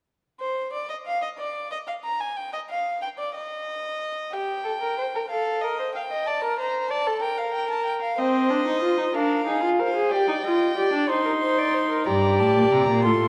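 A lone violin opens this serious, contemplative baroque-style fugue for string quartet, its gut-string tone airy-bowed and reedy as it states the subject in a slow 6/8 at 62 BPM. A darker, more distant second violin enters at 4.3 seconds over minor-key harmony, then a close, nasal viola joins at 8.2 seconds, and a rich cello with light vibrato arrives in the bass at 12.1 seconds, just before this fragment of a longer piece cuts off. The period-style playing sits in a reverberant recital hall, colored by worn cassette tape whose warbly pitch drift gives the sound an aged, wavering quality.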